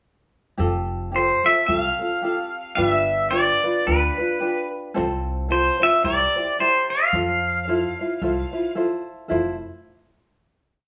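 A lightly swung eighth-note lilt in four sets the pace for this short, complete Hawaiian piece, sunny and languid in mood. The upright bass, plucked pizzicato on steel strings, plays a two-feel of roots and fifths with a woody, growly thump, while the tenor ukulele, thumb-plucked and up front, supplies bright folk strumming in open chord shapes; both start at 0.6 seconds. At 1.2 seconds the electric pedal steel guitar takes the melody, the loudest part, clean and twangy under compression, played with fingerpicks, slide and volume swells as it sings song-like motifs in its upper register. The harmony drifts from an added-ninth opening chord through a dominant seventh and a second-inversion chord to a major-seventh resolution, settling into a final chord at 9.3 seconds. The band sounds as if playing live together in one room, wrapped in a moderate stone-room reverb that lends the relaxed performance a gentle sense of space.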